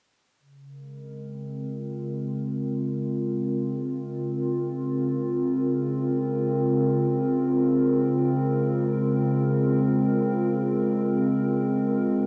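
Reflective and melancholic, this ambient excerpt from a longer piece sets a single warbly, tape-like pad up front, holding dark, detuned, lo-fi chords with chorus from 0.7 s to 12.3 s inside a vast cathedral reverb that lingers long in an echoing space.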